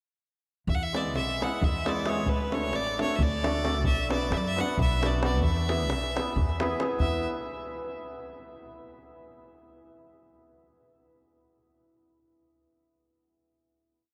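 A festive, virtuosic burst of Balkan wedding-band folk in a brisk 7/8, this whole short piece runs through a single section over E, D, Bm and E before settling on a final chord. A clear, focused fiddle with light vibrato carries a motif-based melody in sentence phrases, touched with analog delay, while a shimmering hammered dulcimer rings out off-beat chords in close voicing, and a woody, thumpy pizzicato upright bass plays root and fifth on the main beats. A tight, vintage-sounding davul drives a two-stick pattern, and the whole band sits in a dreamy mix soaked in cathedral reverb.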